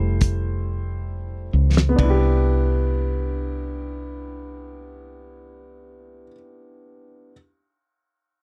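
A smooth, vintage-toned grand piano opens this short fragment of a slow six-eight R&B piece in C major, taking a solo turn over an Fmaj9 chord while the tempo eases back. Underneath, a dark, round fretless electric bass with a woody, hollow-body character sits up front, its sound direct and amped and dressed in a lush chorus. A dry, damped 1970s-style acoustic drum kit with a fat snare and tight kick plays a fill around the kit, then drops out at 2.2 seconds. The harmony settles onto Cmaj9 at 2.0 seconds as the piano continues its unhurried accompaniment until 7.3 seconds. The close, intimate studio sound carries little reverb, giving the music a sensual feel at roughly 42-48 dotted-quarter beats per minute.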